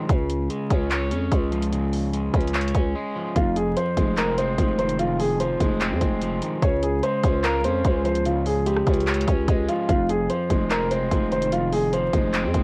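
A twangy, slightly broken-up electric guitar opens this melancholic, hard-hitting half-time trap cut, joined almost at once by a growling, buzzy 808-style bass and a tape-saturated electronic drum kit with a hard-clipped kick, bright hats, handclaps and rim clicks, and after a short break at 3.0 seconds a dark, mellow grand piano carries the melody through plate reverb and cassette grit, all set in a lightly reverberant home-recorded sound dusted with vinyl crackle.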